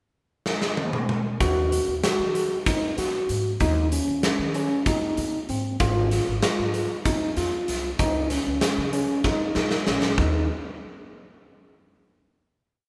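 A big rock drum kit opens this short progressive instrumental with a fill at 0.5 seconds, its punchy kick and medium-tuned snare sitting up front in a bright stone room. At 1.4 seconds the band settles into an intricate, brooding 7/8 groove with a straight feel, as an upright bass and an overdriven tine electric piano join together. The bass plays a syncopated pizzicato riff, woody and growly from its steel strings, down in the low register. Above it the electric piano repeats an arpeggiated ostinato through a combo amp, barky and gritty with a medium tremolo. Another drum fill closes the groove before the piece ends on a final note from 10.2 seconds, heard with light reverb as a band playing live in one room.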